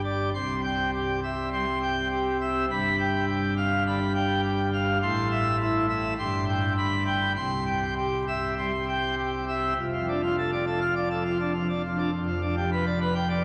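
A long, wet cathedral reverb with a six-second tail surrounds this recording, and a faint vinyl crackle sits over it. It is a jubilant classical organ toccata in C major, moving at 102 BPM in a straight 4/4. A single pipe organ plays alone on a full plenum registration with mixtures, giving a bright, romantic voicing placed up front and spanning from a deep F1 to C6 at the top. The harmony opens on C and moves through G7 and A minor before settling back to C, then at 9.8 seconds the music turns to a new passage over D minor and G7 with F in the bass. Cut from a longer piece, it lasts just over 13 seconds and ends on that unresolved G7.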